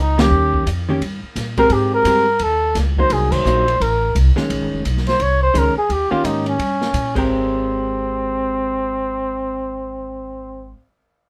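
Warm and relaxed, this small-group swing and bop excerpt in Ab major moves at 172 BPM with a swung feel: a vibrato-laden, roomy flugelhorn carries the solo melody up front, a woody, thumpy pizzicato upright bass on gut strings holds down the bass line beneath, a clean, compressed hollow-body electric guitar plays picked accompaniment, and a small-room acoustic kit with dark cymbals and a boomy kick sits low in the mix, all in light reverb, with band accents at 0.1 and 3.3 seconds and the drums dropping out at 7.2 seconds.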